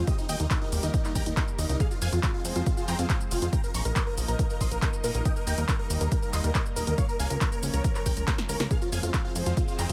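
A straight 4/4 pulse from a punchy, tape-warm electronic kick and an analog drum machine's snare, handclaps, hi-hat and shaker, with a fill at 8.3 seconds, drives this soaring, euphoric uplifting trance excerpt, where a plucky, wave-folded analog bass pumps to the sidechain beneath a lush, thick unison pad with chorus and phaser, while a huge, bright detuned supersaw lead carries the melody through phaser and tape echo in a dry mix.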